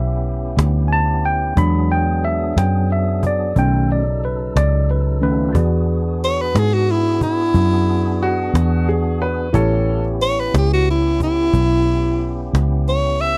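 A dry, close 1970s-style studio sound frames this swaggering, rollicking slow blues in 12/8 at 60 BPM in E mixolydian, cut from a longer piece, where a worn, slightly out-of-tune tine electric piano through a combo amp solos over the opening bars above a fat tonewheel organ on a slow rotary speaker, a dark, foam-muted, round electric bass up front and a woody cajon with faint snares played with soft hands, before a mellow, close-miked tenor saxophone with light vibrato takes the melody from 6.2 seconds and a clear, intimate upright piano with audible action noise adds a brief second line from 8.2 to 10.0 seconds.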